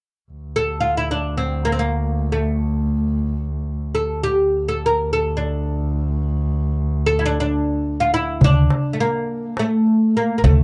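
A dry, close 1970s-style studio sound with light reverb frames this soulful, melancholic fragment of Turkish makam ensemble music in free time. A clear, focused bowed double bass holds a vibrato-laden drone on D2 from 0.3 to 8.5 seconds, while a bright, woody fretless oud, plectrum-plucked on its double strings, carries the melody between A3 and Bb4. At 8.4 seconds a thumpy pizzicato upright bass with steel strings and a clay-shelled darbuka with a natural skin head, heard in a small room, join the oud.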